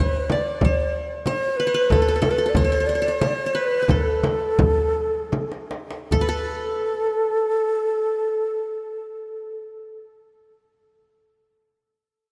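Soaked in a lush hall reverb, this dreamy, stately fragment of an Arabic maqam ensemble moves in 3/4 at 74-93 BPM. An expressive, breathy ney with vibrato and tape echo sits up front carrying the melody, while a bright-edged, plectrum-plucked qanun plays a second line. A saturated clay darbuka and a close, dry frame drum enter at 0.3 seconds, the tempo slows from 1.9 seconds, and a drum fill arrives at 5.3 seconds.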